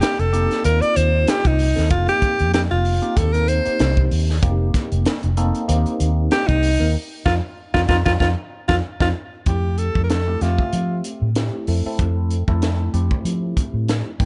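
A dry, dark production puts a gritty, saturated fusion drum kit with a high-tuned snare and tight kick up front, alongside a round, punchy, foam-muted fingered electric bass, in this soaring, slick electric jazz fusion excerpt with a light swing. A bright, close-miked alto saxophone solos with vibrato and scooped notes over a clean tine electric piano colored by phaser. The band hits accents from 6.9 seconds, and a drum fill leads into a new chord at 9.5 seconds before the saxophone drops out at 11.0 seconds.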